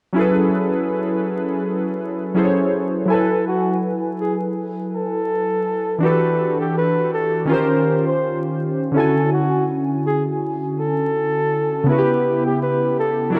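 Reflective and nostalgic, this swung lo-fi hip hop fragment opens with warbling, detuned synth keys coloured by chorus and cassette-tape wobble, and at 3.1 seconds a breathy, mellow flugelhorn enters with a jazz-style solo full of vibrato and scooped notes trailed by analog delay, the whole set in a dark production with plate reverb and vinyl crackle.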